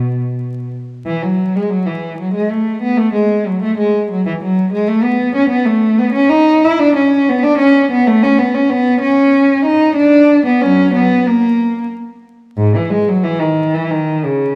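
In a flowing, rubato three-four, a single bowed cello, warm and up front with expressive vibrato and portamento, plays a radiant baroque-style suite movement alone, set in a lush recital-hall reverb beneath a vinyl crackle, in a passage cut from a longer piece.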